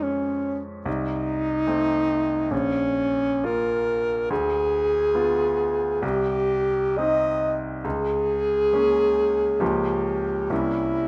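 Closely miked with light reverb and fine detail, this 11.1-second passage from a longer romantic classical duo sets a melancholic, solemn mood at 60-74 BPM in a rubato 4/4, as a mellow, up-front alto saxophone sings the melody with classical vibrato over a bright, intimate grand piano whose long sustain and audible action noise colour harmonies moving from Db/F through Ddim7 and Gm7b5/Db to a closing C7b9.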